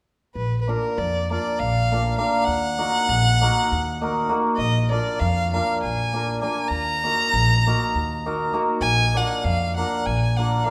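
Balkan folk in the manner of a Balkan wedding band, this bittersweet, restless excerpt moves in a straight 7/8 at 198 BPM counted in eighths, alternating between Bb and Ebm. A rich, smooth bowed violin with light vibrato carries the melody up front, over a hammered, shimmering cimbalom that enters at 0.7 seconds and a woody, thumpy pizzicato upright bass on gut strings. The trio sits up front in a wet recital hall reverb with a 1.5-second decay, and the whole passage is cut from a longer piece.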